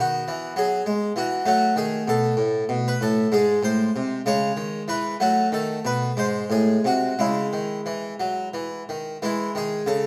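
A recital hall's moderate reverb, with a decay of about 1.9 seconds, surrounds a solo harpsichord placed up front, its plucked tone full in the Flemish style, with two sets of strings sounding together. This is a short passage cut from a baroque-style suite movement, a dance in 6/8 that flows with a flexible, rubato feel. The single harpsichord carries the whole texture across a range from G#2 to C#5, playing from the start until 10.1 seconds. The harmony moves through minor chords, a diminished chord and strong dominant arrivals before the opening phrase ends at 9.2 seconds, then turns toward a brighter major chord as the passage is cut off. The mood is flowing and dance-like, with an unhurried lilt that suits the resonant space.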